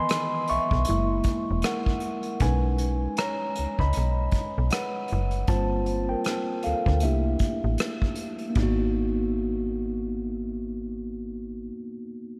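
Swung sixteenths in 4/4 give this late-night, soulful R&B and neo-soul fragment a loose, unhurried sway, carried by an acoustic drum kit played with bundle sticks (dark ride and hi-hat, punchy kick, rim clicks) and a snappy, metallic-edged FM bass sitting up front. A mellow, clean tine electric piano, heard through its built-in speakers, takes the lead as a solo until 8.6 seconds, moving through lush extended chords such as C#m7, Gm11 and C13 before settling on G#m9 as a new section begins. The drums drop out at 8.8 seconds, and the whole mix is steeped in a dreamy cathedral reverb that lets each note linger long after it is played.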